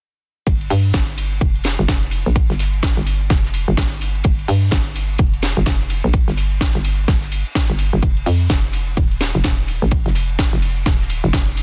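A hollow, knocking FM bass sits up front in this bouncy, gritty bass house excerpt, its fast-attack, decaying notes ranging from Eb1 to G2 and given tube saturation and a sidechain pump. A punchy, tape-tinged electronic kick and a layered house kit with a cracking snare and metallic hats drive the swung groove. Beneath them a dry, damped 70s acoustic kit adds dark cymbals and a fat snare, its cymbals and hats filtered and pumping, all in a dense, heavily limited mix with little reverb.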